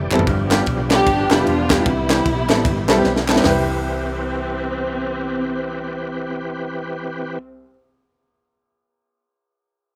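Uptempo gospel at 151 BPM in C major, this soulful, hopeful swung excerpt moves from G7 to Cmaj7 over a bright, brilliant baby grand piano with slapback echo, a round, dark hollow-body electric bass and a thick, overdriven tonewheel organ holding sustained chords through a slow rotary speaker and chorus vibrato, key click audible. A punchy, up-front fusion drum kit with a high-tuned snare and pumping room sound drives the first half alongside background handclaps, with a drum fill between 3.0 and 3.4 seconds before both drop out near 3.6 seconds. From 0.9 seconds a lush, bowed string section carries the melody with vibrato and portamento, all in a dry sound.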